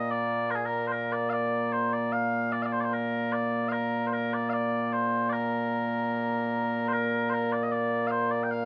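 A set of small bagpipes opens at once and carries the whole of this short fragment, cut from a longer piece of Scottish pipe music. The instrument sounds mellow and sweet, its tone continuous and placed up front, with a light reverb around it. The tune moves in a straight 2/4 metre, its phrase heard once and then begun again at 6.9 seconds before the fragment breaks off at 8.7 seconds. The pipes span a range from Bb2 up to G5, tuned slightly bright with A4 at 443 Hz. The mood is ceremonial and stirring, fitting the traditional Scottish character of the playing.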